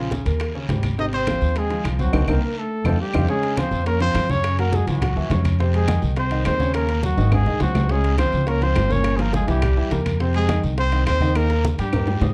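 Trumpet, trombone, concert grand piano and upright bass start together in this sophisticated, danceable stretch of Afro-Cuban jazz at a brisk 208 BPM in straight 4/4. The trumpet carries the melody with a warm, vibrato-laden tone, scooped notes and a smooth top. A mellow, breathy trombone sits behind it on a whispered, intimate second line. The piano accompanies with deep bass and a natural sound across a broad range, while the woody pizzicato upright bass stands up front. From 0.1 seconds, congas, bongos and a raspy, vintage-sounding guiro join, followed by ringing metal-shell timbales and dry, wood-toned claves, with the bongos kept very quiet and the rest of the percussion in the background. The harmony moves through rich chords such as Gbmaj9#11 and Bbm13/G, with a band accent and drum fills along the way, the last fill running up to 12.3 seconds where the excerpt is cut, all in a dark production with light reverb.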